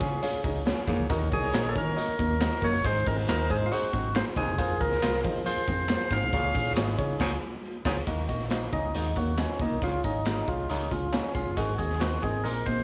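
This excerpt of a driving, passionate 1960s-style soul number opens with the band already in motion: a raw garage drum kit, saturated and gritty, with a punchy kick and medium-tuned snare sitting up front in a pumping stone room, a dark, round muted bass, a polished grand piano with short sustain, and a slightly broken-up guitar riff tucked behind through a small old amp. A tight, clear saxophone section plays a second line in the background, its vibrato trailed by tape echo, and moments later a raspy, close-miked baritone saxophone adds a low, edgy riff. Tambourine, maracas and group handclaps join from a live room, while a lightly overdriven tonewheel organ arrives at 1.3 seconds to carry the melody up front, its percussive attack and key click giving it bite. The band hits an accent near 7.2 seconds, the saxophone section drops out, and at 8.1 seconds the organ takes a solo over the rest of the band. 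A light small-room reverb ties the parts together over a straight four-beat feel.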